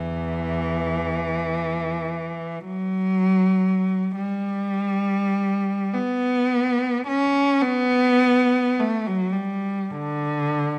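A lone bowed cello opens this brief classical passage, its rich, up-front voice carrying a lonely, mournful mood through a slow, freely stretched rubato in three. The single player sings with vibrato and expressive portamento, and the line moves into a new section at 4.2 seconds. Close, detailed miking catches the instrument intimately, while a moderate scoring-stage reverb adds a sense of space around it.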